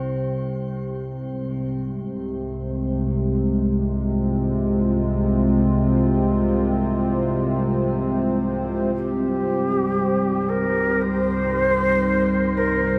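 Dark ambient drone in free time and C minor, desolate and cavernous, heard as a section cut from a longer piece. Tubular bells open with brief, solemn, metallic arpeggios around C4, ringing through shimmer reverb and delay until 3.0 seconds, while a low analog drone between C2 and C3, sawtooth-based, detuned and evolving under chorus, holds the floor for the full length. From 2.0 seconds a deep, moody analog pad adds sustained chords from G3 to C5, its wave-folded square and triangle tones treated with chorus and shimmer reverb, over the F minor harmony that arrived at 0.7 seconds. At 8.9 seconds the chord turns to C minor, and at 9.0 seconds a mellow, hollow shakuhachi enters with an airy, bamboo-toned melody between G4 and C5, its crisp chiff and vibrato floating in shimmer reverb. The whole sits in a vast, echoing space with a huge, wet reverb tail of 8.2 seconds.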